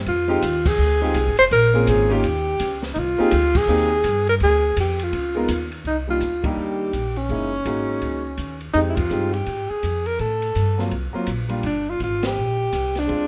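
A swung eighth-note feel in 4/4 drives this swinging, late-night cut from a longer small-group jazz piece rooted in swing and bop. The upright bass is plucked on gut strings, woody and thumpy, sitting up front. The breathy alto saxophone takes the solo melody in a jazz style, with subtone, light vibrato and scooped notes, while the drum kit stays further back in a small room with dark cymbals, a high-tuned snare and a boomy kick. A clear concert grand piano accompanies with a natural tone and deep bass, and light reverb surrounds the group. The harmony moves through Fm7, Bbm7 and Eb7 to Abmaj7, then a second section beginning at 5.8 seconds opens on Cm9. Recurring band accents, the first at 0.6 seconds, punctuate the phrases.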